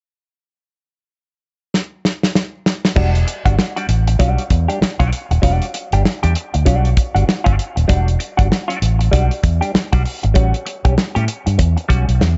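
A swung sixteenth-note funk groove in four sets a cool, sly mood, opening with a dry, damped drum kit whose fill at 1.7 seconds leads into the main section. The kit sits up front, with a tight kick, a medium-tuned snare and subdued, dark-toned crash and hi-hat. At 3.0 seconds a fingered electric bass arrives, amped and punchy through an envelope filter, as loud and forward as the drums. Alongside it, a clean, compressed electric guitar plays accompaniment in the middle register, colored by wah and a touch of spring reverb. The harmony rests on Em9 and moves to A13 at 10.4 seconds, and light reverb with a softened top end keeps this fragment of a longer piece mellow and close.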